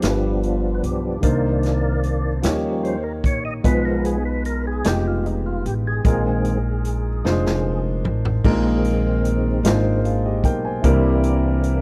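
A tonewheel organ solo opens this slow, uplifting gospel passage, its fat, lightly overdriven tone carrying key click, second-harmonic percussion, chorus vibrato and a slow rotary speaker. Beneath it, a concert grand piano gives intimate accompaniment with deep bass, long sustain and audible action noise. A pizzicato upright bass adds a woody, growly, dark low end, and a swinging big-band drum kit with a punchy kick and medium-tuned snare moves through crash, hi-hat and toms at 50 BPM in a straight 6/8. A drum fill from 7.2 to 8.4 seconds closes the organ solo and leads into a new section, while the reverent harmony moves through chords such as Cm9, Abm6/Cb and Bb7sus4 before landing on C7. The dry, close sound recalls a 1970s studio, with the drums, bass and piano placed up front in a natural room, and the clip is cut from a longer piece.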